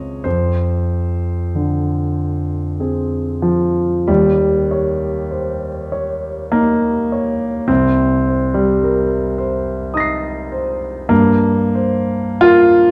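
A concert grand piano plays alone through this short passage cut from a longer impressionist classical piece, its tone warm and natural with a deep bass, and it sits up front in the sound. The mood is nocturnal and mysterious, moving slowly at 43-55 BPM in 3/4 with a free, rubato feel. The piano spans a range from C2 to C7, opening on an Fm6 chord before the music shifts into a new passage at 4.1 s on Eb7, then moves through Cm7 and Gm7. A moderate reverb suggests a large scoring stage, giving each note a lingering tail of about 1.5 seconds. The overall production is dark, suiting the shadowy, late-night atmosphere.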